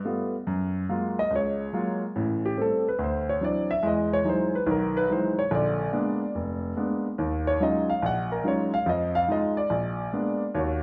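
Solo jazz piano fills this short fragment of a longer piece, set at 143 BPM in 4/4 with a swung eighth-note feel and a smoky, moody atmosphere. A single grand piano carries everything from 0.0 to 10.8 seconds, ranging from a deep F1 up to Gb5, with a smooth, vintage tone and long sustain that sits up front in the sound. The harmony moves through rich extended chords, opening on Gbmaj9 and passing through Am7, D9, Emaj9, an altered Bb7b9 and Ebm11 before it closes on Fm7 and another Bb7b9. A moderate reverb of a recital hall, with a 1.4-second decay, gives the piano the resonant air of a church or concert hall. The instrument is tuned slightly high, to A4 = 441 Hz.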